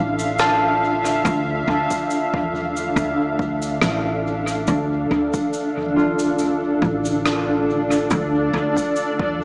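Ambient dub at 70 BPM in D minor, with a gentle swing on the sixteenths, this short cut from a longer piece feels spacious and deep as it rests on a single Dmadd9 chord. A granular cloud pad sits up front from the start, holding sustained chords that sound blurred, detuned and slowly evolving, with a slow attack, long release and its own built-in reverb. Underneath, a woody, growly upright bass plays pizzicato with a thumpy low end until 8.7 seconds, while a thumb-plucked concert harp enters at 0.4 seconds with ringing arpeggios coloured by vintage 12-bit sampler grit and analog delay. A soft-mallet drum kit of cabasa, rim click and toms sounds like it is in a big room and trails dub echo, and from 1.2 seconds a punchy, overdriven electronic kick adds weight from the background. The whole mix sits in a moderate echo chamber reverb, heavy with echoes yet heard through a small-speaker tone.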